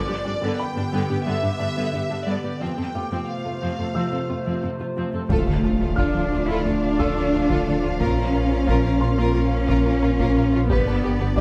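A straight 4/4 pulse at 89 BPM drives this brooding, futuristic hybrid orchestral and electronic film cue, cut from a longer piece, where a lush, vibrato-rich violin section carries the melody over clear, distant violas, a warbling lo-fi tape-like pad with chorus, a dark baby grand piano with delay in the background, nasal sawtooth arpeggios from a tight sequenced synth, and a close, expressive cello section on bass. At 5.3 seconds the music shifts to a fuller passage as a second violin line, very quiet French horns holding chords, a clean sine sub bass, woody bowed double basses and hard-stick taiko drums join, along with a huge, dark impact that lasts until 8.0 seconds. The chords move from G to F, then Dm, Bbm and back to G, all set in a moderate scoring-stage reverb.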